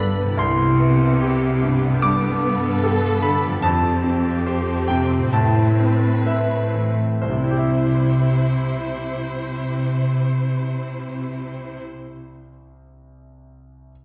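Heard from further back in a wet scoring-stage reverb, this tender, moving excerpt of a cinematic orchestral film score unfolds in a rubato feel and eases its pace over the first 7.2 seconds, as a brilliant, up-front concert grand piano sits over a lush, focused cello section bass, a distant viola section with a soft attack and expressive vibrato, and ringing fingerpicked harp arpeggios in the background, before the harp falls away at 12.4 seconds and the piano lingers alone until 13.9 seconds.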